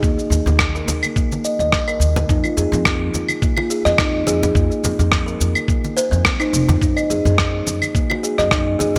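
Meditative and hypnotic, this organic downtempo excerpt moves at 106 BPM in 4/4 with a light sixteenth-note swing, tuned to A4 = 436 Hz. An up-front, mellow kalimba plays soft, ringing arpeggios through a delay over a woody pizzicato upright bass with tube saturation, while a gritty, thumpy sampler-style kick and a compressed, tape-warm set of shaker, rim click and claves carry the beat, joined at 0.3 s by bright, close, dry congas sitting lower in the mix. The harmony moves from Eb5 to F7(no3) at 2.3 s before the chords fall away at 6.8 s, inside a moderate plate reverb and a bright 1980s-style digital production.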